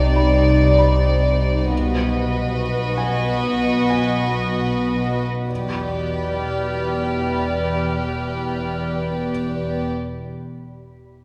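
Moving in a straight 3/4 at 95 BPM, this eerie, mysterious cue from a suspense film score is tuned to A4 = 435 Hz. Its harmony shifts from Cmadd9 to B and settles on Em7 at 5.5 seconds. Bowed sul tasto violins carry a pure, floating melody over a close, intimate second violin line up front. A dark cello section with light vibrato and a soft-attack chamber double bass section in the background hold the low end alongside a calm, detuned organ-like drone with ring modulation and a moving notch. A glassy, ethereal FM pad sustains mellow chords with ensemble chorus, and until 5.5 seconds a felt-muted upright piano adds soft texture with audible action noise. From 5.5 to 8.9 seconds a distant, woody, lush high violin section takes over that texture, all set in the long, wet reverb of a recital hall.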